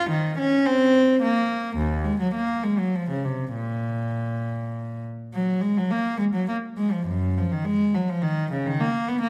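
A single bowed cello, reedy and gut-strung in period style, sits close and up front for the whole 9.3 seconds of this solemn, flowing baroque-style suite movement for unaccompanied cello, cut from a longer piece. Moving in 3/4 at roughly 97-109 BPM with a rubato feel, the line ranges from Eb2 to Db4 and shifts from Bb minor to Eb minor at 5.3 s. A moderate scoring-stage reverb gives the solo instrument a sense of space around it.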